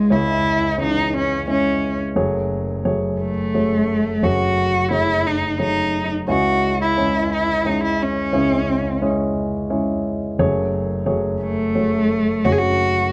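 A dark production in a large studio reverb frames this brief, intimate fragment of an acoustic folk-pop ballad in 3/4, its heartbroken mood carried by a single bowed cello set up front. The cello sings the melody with a rich tone, soft attacks, vibrato and expressive portamento. A warm baby grand piano, also close, accompanies it throughout, moving between C#m and F#madd9 chords.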